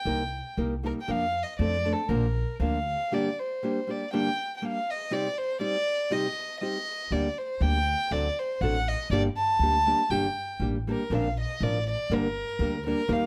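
Close, detailed microphones in a moderate studio room give this short mariachi-flavored Mexican folk passage an intimate, present sound. At 120 BPM in a straight 2/4, it opens in Bb major and turns to G minor at 3.1 seconds, carrying a mood that is both festive and romantic. A dark violin carries the melody up front, bowed sul tasto by a single player with a soft attack, light vibrato and a smooth top, with plate reverb lending it a gentle halo. A small-sounding nylon-string guitar fingerpicks the accompaniment, with the odd finger squeak adding a human touch. An upright bass plays pizzicato with a woody, growly, thumpy tone from steel strings, drops out briefly and returns at 7.1 seconds. The fragment is cut from a longer piece, closing on a G minor chord after a brief return to the opening material.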